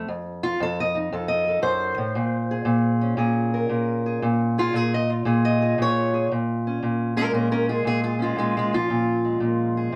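Swung eighths drive this mournful, soulful acoustic country blues in 4/4 at 116 BPM, set in B-flat minor and cut from a longer piece. A lone fingerpicked steel-string parlour guitar sits up front for the full 10 seconds, its old strings giving a woody, boxy voice as it moves from F7 to Bbm7 at 2.2 seconds. It carries a solo passage until 6.3 seconds, all within a dark studio sound touched by a short, wet reverb.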